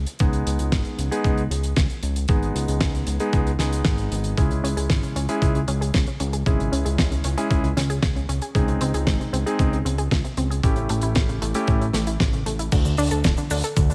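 A thumpy, sampler-style electronic kick and a dry, damped 70s drum kit with dark cymbals, a fat snare, hi-hat and cabasa drive this danceable, melodramatic italo disco cut in straight four, alongside an up-front sawtooth analog bass with a filter sweep, clangy, long-sustaining electric grand piano stabs through low-pass filter and delay that stop at 11.8 seconds, and a lush, detuned unison pluck playing tape-worn arpeggios from 4.4 seconds, set in a small, lightly reverberant room.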